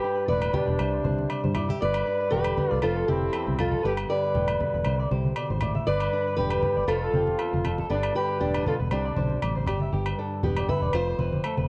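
A boxy, woody fingerpicked steel-string parlour guitar carries the melody in this danceable, joyful highlife excerpt at 118 BPM in G mixolydian, joined from the start by a vibrato-laden trumpet with scooped notes, a small fingerpicked nylon-string guitar with finger squeak, and a slightly broken-up electric guitar playing arpeggios through tape echo, all with a cassette-tape character. A round, foam-muted electric bass sits up front with low-tuned, thick-skinned congas in the background and ringing, dry agogo bells, over a swung groove cycling through G, Csus2 and F. The trumpet stops at 9.4 seconds, and from 9.9 seconds the steel-string guitar takes a solo, all in a small, lightly reverberant room that feels like a home cassette recording.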